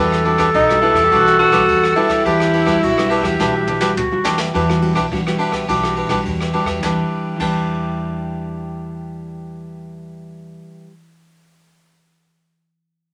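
Samba and choro in E minor at 105 BPM in a straight 4/4, this short excerpt cut from a longer piece carries a bittersweet, yearning mood over an Em9 chord that settles to Em7 at 6.8 seconds. A breathy alto saxophone leads the melody up front in a jazz style, with vibrato, subtone and scooped notes, from 0.5 to 3.9 seconds. A clear clarinet in classical style traces a second line from the start until 4.5 seconds. Underneath, a crisp, picked cavaquinho sits forward in the accompaniment, joined by a full-bodied, fingerpicked nylon-string guitar with a deep classical character and a woody, growly pizzicato upright bass on steel strings. A jazz brush drum kit with dark cymbals, a medium-tuned snare and a boomy kick plays brushes in an airy small room, adding a fill from 3.4 to 4.5 seconds before dropping out at 7.6 seconds. The polished recording is bathed in a wet studio reverb.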